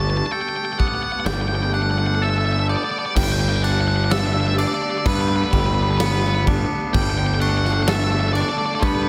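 A punchy, up-front fuzz bass drives this short, cinematic post-rock fragment at 64 BPM, with a dark, distorted octave-fuzz lead guitar carrying the melody through analog delay over a Gadd9 chord. A twangy, compressed electric guitar and a bell-like glockenspiel struck with brass mallets spin delayed arpeggios, while a dark chamber string section holds smooth, vibrato-rich chords in the background. During a build-up, a big acoustic rock kit with bright cymbals and a tight kick enters at 0.8 seconds, and the hopeful mood opens into a new section at 3.2 seconds, all set in light studio reverb.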